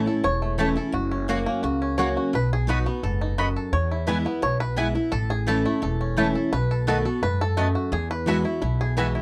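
A twangy, percussive five-string banjo takes the lead from the start, played with fingerpicks over full-bodied picked dreadnought guitar and a thumpy, pizzicato gut-string upright bass, in this driving, rustic bluegrass fragment at 172 BPM in E major. A woody, double-strung mandolin adds picked stabs from 0.6 seconds as the chords move from A through F#, B, E and B7 to a closing Eadd9. The dry, close 1970s-style studio sound keeps every instrument up front under a light reverb.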